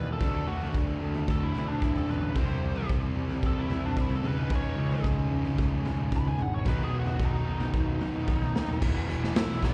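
A gritty raw garage drum kit with a boomy kick sits up front in a small, pumping room in this anthemic, restless excerpt of quiet-loud alternative rock at 112 BPM in E major, alongside a biting, overdriven lead guitar solo with slapback and tape echo, two distorted fuzz guitar riffs in the background, a growly fuzz picked electric bass, and faint, twangy twelve-string electric guitar arpeggios that stop at 8.8 s, where a third, very quiet double-tracked fuzz guitar enters just after a drum fill at 8.5 s as the chords move from D through C, C#sus2 and B to E, all heard live through a venue PA with recital hall reverb.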